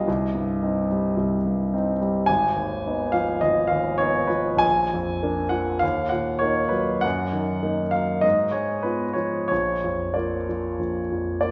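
A warm concert grand piano carries this short, lyrical excerpt of a romantic character piece alone, played with flowing rubato, its intimate tone marked by audible action noise, deep bass and long sustain, set in a reverberant recital hall heard from further back with a softened, rolled-off top end.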